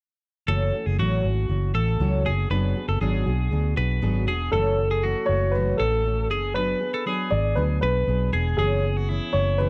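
A dark, round, foam-muted electric bass sits up front in this restless, bittersweet indie pop fragment, its punchy, amped tone thickened by tube saturation. At 118 BPM in a straight 4/4 feel in F# minor, tuned slightly sharp to A4 = 443 Hz, the harmony moves from F#m7 to G#dim over an F# bass, then reaches C#m7 over F# near the close. A full-bodied, fingerpicked jumbo steel-string acoustic guitar with fresh strings provides the accompaniment, while a bright, twangy twelve-string electric guitar plays compressed, clean arpeggios with a slapback echo. At 4.5 seconds a woody upright piano with long sustain enters to carry the melody, also touched by slapback echo. The small room gives a dry, close 1970s-style studio sound, and the passage is cut from a longer piece, ending at 9.7 seconds.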